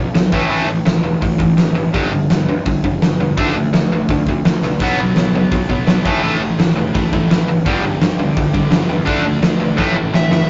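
Punk rock at 168 BPM, energetic and rebellious, where a cranked, double-tracked stack guitar drives a bright riff up front over a fat-snared, punchy-kicked big-room drum kit and a growly fuzz bass in the background, with a crunchy second guitar joining at 4.8 seconds and a nasal parked-wah lead guitar touching a single note at 10.2 seconds, all captured as a rough rehearsal-room recording with tube saturation, light reverb and a dull top end, cut from a longer piece.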